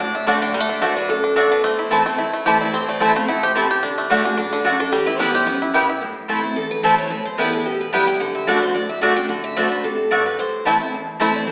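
Lonesome yet driving, this fast bluegrass fragment at 220 BPM swings its eighths as a twangy, percussive banjo played with fingerpicks leads up front until 6.0 seconds and returns briefly near 10.7 seconds, while a bright picked dreadnought guitar carries a second melody, a full-bodied dreadnought guitar picks the accompaniment, and a woody, double-strung mandolin adds prominent stabs from 0.3 seconds, all set in the wet reverb of a recital hall and heard through an AM radio tone.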